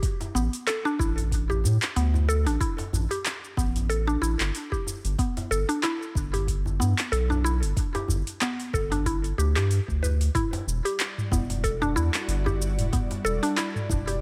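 A round, dark analog bass sits up front with tube saturation and sidechain pumping, anchoring this earthy, meditative organic downtempo excerpt with its swung sixteenth-note feel. Around it, a woody FM mallet pluck spins mellow arpeggios through chorus and digital delay, while a tape-toned electronic kick, an afro-pop kit of handclaps, metallic hats, shaker and toms, and an acoustic djembe supply the groove. The harmony moves from G to Em9 at 10.3 seconds, and at 10.9 seconds an ethereal, airy pad of detuned sawtooth layers enters with slow attack, ensemble chorus, 12-bit sampler grit, built-in reverb and sidechain pumping.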